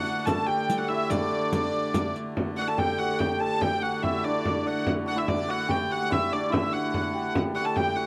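A nasal, reedy hurdy-gurdy carries the melody up front in this rustic, ancient-sounding medieval dance in D major, set in a straight 6/8 at 96 BPM. Beneath it, a shimmering hammered dulcimer plays a second line while a second hurdy-gurdy holds a smooth, even drone low in the range. A small, bright frame drum keeps the pulse throughout, joined until 2.3 s by a riq with dark jingles; the music moves into a new section at 2.4 s, all within a light reverb in this brief cut from a longer piece.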